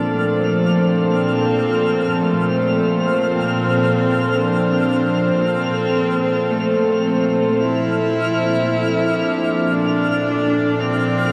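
This peaceful ambient excerpt features a clear, bowed solo cello fading in across its whole 11.3 seconds, singing an even, vibrato-touched melody between A3 and E4 through a diffuse ambient delay. Alongside it, a dark studio string section holds soft-attacked sul tasto chords on Bbmaj7, its smooth, floating top rounded off by a low-pass filter and sitting up front in the mix. Further back, a mellow analog drone on Bb2 to F3 hums with detuned, wave-folded synth tones and chorus. High above, a twinkling granular texture on F6 adds a sparkling octave-up shimmer with its own reverb. At a slow 56 BPM in Bb lydian, the whole passage bathes in a huge, wet reverb and the warbling pitch drift of worn cassette tape, giving it a hazy, vintage glow.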